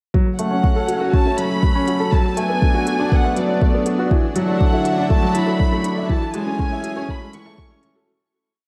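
Piano and strings electronica with a melancholic, intimate mood, built as one long build-up that begins fading out at 5.4 seconds. An up-front baby grand piano carries the riff as a 16-step arpeggiated sequence, its natural tone trailed by a diffuse ambient delay, while a close chamber violin section enters at 0.4 seconds with a motif-based melody, bowed sul tasto with light vibrato and a soft attack. Beneath them, a lush, detuned sawtooth pad holds sustained chords in the background, treated with chorus and sidechain pumping, and a very quiet, bright analog pluck runs a 6-step loop that drifts against the bar. A deep, tape-warm electronic kick drives a four-on-the-floor pulse up front, joined by smooth closed hi-hats that keep a restrained pulse, and a very quiet, round analog bass adds long gliding notes. The chords move from F#m through Bm7 and Dadd9 to Amaj7, and the whole mix is dreamy and soaked in plate reverb.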